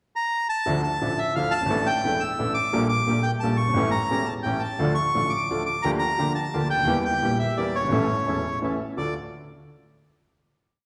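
A reedy, bright bandoneon leads up front from 0.2 seconds, spinning a motif-based melody in sentence-like phrases over a short pickup before a clear, polished baby grand piano enters at 0.7 seconds with waltz-time tango accompaniment accented on one. A second bandoneon, boxy and set in the background, adds stabs in the same accented waltz rhythm. This complete, sultry and melancholic tango in D harmonic minor moves at 173 BPM in 3/4 with a rubato feel, passing through a single variation to a final D minor chord, all within the wet reverb of a recital hall.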